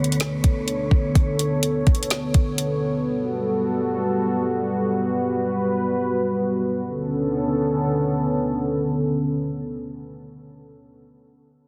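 A dark analog pad, a smooth R&B drum kit and a faint wind-like noise texture open this atmospheric cloud-rap excerpt together, setting a spacious, hazy mood at 126 BPM in a half-time 4/4 feel in B minor. The pad is the core of the track: deep and moody, built from detuned sawtooth and triangle tones with a sub octave, it holds slow-attack sustained chords through chorus, sidechain pumping and a low-pass filter, with a filter sweep running until 6.9 seconds. The electronic drum kit sits up front with a soft kick, woody snare and metallic hats, but it drops out at 2.7 seconds, while the airy, breathy noise layer, mellow and tucked in the background with its own built-in reverb, ends after only 1.1 seconds. The harmony moves from Bm9 to Gmaj9 and returns to Bm9 as a new section begins at 6.9 seconds, leaving the pad to carry the rest on its own. Light reverb and a dense, heavily limited modern master round out the sound.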